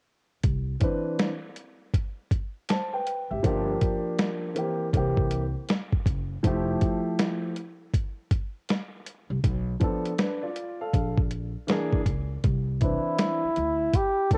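A woody, gut-strung upright bass and a gritty, compressed sampler-style drum kit with a thumpy kick open this cool, relaxed jazz-hop excerpt at 80 BPM, swinging lazily in C major. A dark, mellow baby grand piano with a vintage cassette-tape tint joins at 0.8 s, carrying chords such as Cmaj9, Fmaj9 and Bb7#11. At 12.8 s a breathy, soft-edged flugelhorn enters with a jazz-style solo touched by light vibrato, all set in a moderate spring reverb and captured at home on cassette.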